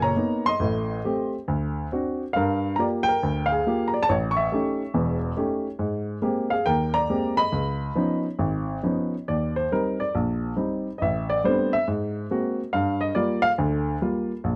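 Solo jazz in a playful, swinging 4/4 at 139 BPM with a rubato lilt, as an intimate baby grand piano with audible action noise and short sustain sits up front in a dry, close 1970s-style studio sound, ranging from deep bass to bright upper notes over rich chords like Bmaj7, Abmaj9 and Db9 before shifting into a new passage at 9.3 seconds built on Eb6, Am11 and Gm7.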